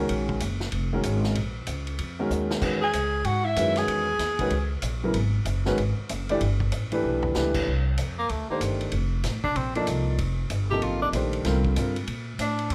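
A swung 4/4 feel drives this searching, intense modal jazz fragment, where an up-front grand piano and woody pizzicato upright bass carry the chords over a gritty, dark-cymbaled vintage drum kit with a couple of fills, while a distant, scooped-note soprano saxophone states the melody from 2.8 seconds with a smooth-topped tenor saxophone as a second line, the tenor returning at 8.2 seconds for a solo, all set in light reverb.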